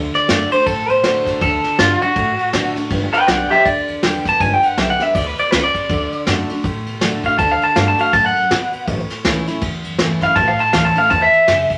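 Bathed in wet studio reverb, this rowdy, upbeat swung rockabilly cut features a twangy, slightly broken-up electric guitar through a small old amp carrying the lo-fi melody up front, backed by a bright, full-bodied picked steel-string acoustic guitar, a woody, thumpy pizzicato upright bass with gut strings, and a soft brush drum kit with tight kick, ride cymbal and snare drum, all moving through D, G, D and A.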